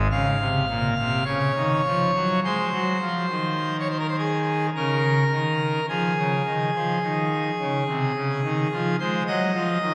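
Reverent and serene, this short classical chorale for solo pipe organ moves with a freely breathing rubato. The full organ sits up front, its mixtures giving a majestic, brilliant sound with romantic voicing, and a wet church reverb lets each chord hang in the air. The harmony settles back home after a dominant chord, then turns to a minor chord near 9.3 seconds just as this excerpt breaks off.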